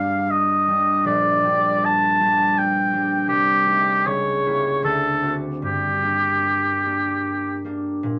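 A warm oboe sings the solemn, elegiac melody up front with light vibrato in a classical style, while a concert harp supports it with ringing, fingerpicked accompaniment in this short fragment of a romantic duo in G minor. The rubato phrasing moves in 3/4 at roughly 72-86 BPM, the harmony passing through diminished chords to a D7 before settling on G minor at 5.6 seconds. The oboe falls silent at 7.6 seconds and the harp rings on alone until 8.2 seconds, both set in a wet studio ambience.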